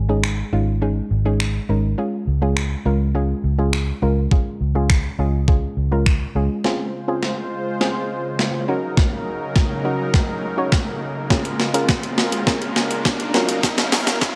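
This upbeat, euphoric dance-pop excerpt in D-flat major at 103 BPM opens on a dark, foam-muted vintage fingered electric bass, punchy and up front with sidechain pumping. A clean 12-bit drum machine joins almost at once, playing a thumpy kick, medium-tuned snare, hi-hat, shaker and finger snaps with a sampler-style, tape-tinged sound recorded in a large room. Alongside it, a soft, round pluck layering triangle, sine, sawtooth and noise plays decaying accompaniment, colored by chorus, a moving notch and its own sidechain pumping, over chords moving from Absus4 to Db. The bass drops out, and at 6.6 seconds a smooth, detuned unison supersaw adds sustained chords, Dbmaj7, Ebm7, Bbm7 and Gbmaj7, as a build-up with a drum fill and a filter sweep begins. From 9.3 seconds an electronic riser enters in the background, and light digital ambience lends the whole mix a touch of space.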